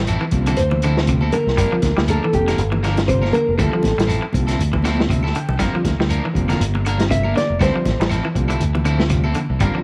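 Light studio reverb frames this defiant, driving afrobeat excerpt at 120 BPM, where a thumb-plucked nylon-string guitar carries the melody from 0.6 to 4.1 seconds and again at 7.1 seconds over a round, punchy fingered bass, twangy slightly broken-up electric guitar arpeggios, tape-echoed electric guitar stabs, a muffled, lo-fi small-room vintage drum kit with a tight kick, a heavy-vibrato overdriven combo organ in the background, bright high-tuned congas, grainy shekere and woody claves, moving between Dm9 and Gm7 with a drum and organ fill at 4.8 seconds.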